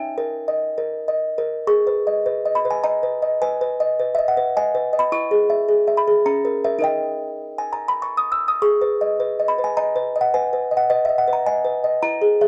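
Eerie and fragile, this classical lullaby for solo music box unfolds in a three-beat metre with uneven, rubato timing, cut from a longer piece. The delicate, tinkling music box plays alone from 0.0 to 12.5 seconds, its dark, mellow tone sitting up front as it moves through minor-key harmony after a brief opening phrase gives way to the main passage at 1.7 seconds. The sound is a dry, close 1970s-style studio recording with a small room ambience.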